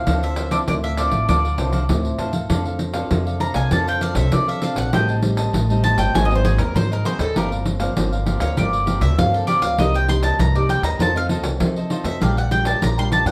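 Yearning and nostalgic, this short cut from a longer samba and choro piece moves at a straight, unhurried pace in four. A bowl-back mandolin carries the melody up front, its picked double strings sweetened by plate reverb, and from 2.5 seconds it takes a solo that runs to the end. Beneath it, a crisp cavaquinho and a fingerpicked, classical-toned nylon-string guitar fill out the harmony. A woody, growly pizzicato upright bass with steel strings sits prominently at the bottom, while a jingly, band-limited pandeiro played with soft hands adds a vintage shimmer from 0.1 seconds. The harmony drifts through rich, bittersweet chords such as Dm9, Am7b5 and Ab9 before settling toward Bb6. The whole group is heard from further back in a large studio room with moderate reverb.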